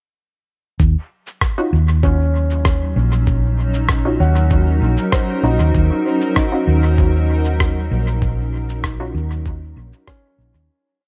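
Ambient dub in Eb minor at 97 BPM, this short, complete piece has a deep, meditative mood, with a straight 4/4 groove settling in on an Ebm7 chord at 0.8 seconds. A soft, slow kick, sampler-style and pitched down, gives a muffled thump, while a sparse cabasa and rim click pattern trails dub echo behind it. Up front, a round, hollow-body electric bass plays a dark, amped dub-style line. From 2.0 seconds a felt-muted upright piano, intimate and low-pass filtered with tape echo, sets three slow loops of unequal length drifting against each other, and at 2.4 seconds a cloudy granular pad drifts in with blurred, slowly shifting chords and its own built-in reverb. Behind these, a mellow sawtooth chord stab with lush chorus and dub echo moves one shape in parallel, and the dark production begins a fade-out at 7.4 seconds.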